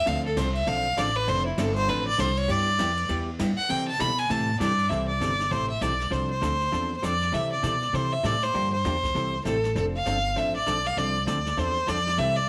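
A clear, focused fiddle with light vibrato and slapback echo opens this playful western swing excerpt, soloing up front over a woody pizzicato upright bass touched with transformer saturation. A clean, compressed hollow-body electric guitar picks the accompaniment through changes like Dm7, G6 and C6, while a brushed jazz kit with a boomy kick sits in the background of a small, lightly reverberant room. The swinging 4/4 groove rolls on as the fiddle solo gives way to a second section at 4.9 seconds.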